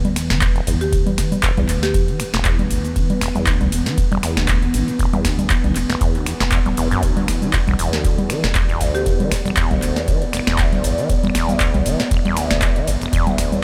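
This trippy, gritty acid house excerpt opens on an E5 chord, with a warbling, lo-fi pad, a rubbery acid bass riff and an up-front analog drum machine all sounding together in E minor at 118 BPM, in 4/4 with a light swing on the sixteenths. The drum machine booms with a crisp snare, metallic hats, handclaps, finger snaps, congas, shaker and ride cymbal, while an electronic kick enters at 0.4 s with a deep, tape-softened punch and a round sine sub bass pumps underneath. The resonant sawtooth acid line has a fast, decaying filter pluck and a dark, overdriven edge trailed by tape echo. In the background, the nostalgic wave-folded pad holds mellow sustained chords, thickened by chorus and its own reverb and gently pumping from sidechain compression. A dry, woody marimba with a buzzing tone and boxy small-room sound plays a G4 from 0.8 to 2.5 s and returns briefly at 8.9 s, echoed on tape. Light reverb gives the whole mix a touch of space, and it reads as a slice cut from a longer piece.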